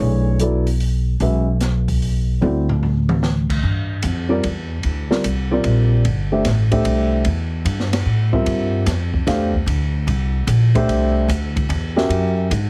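A swung 3/4 lilt drives this spiritual, intense modal jazz fragment, where a mellow, boxy upright piano comps over a woody, thumpy pizzicato upright bass with gut strings, while a small-room drum kit with dark cymbals, a high-tuned snare and a boomy kick enters at 0.4 s and plays a fill at 2.4 s before the harmony settles into a minor-mode vamp at 3.6 s, all under light reverb and a heavily compressed, radio-like sound.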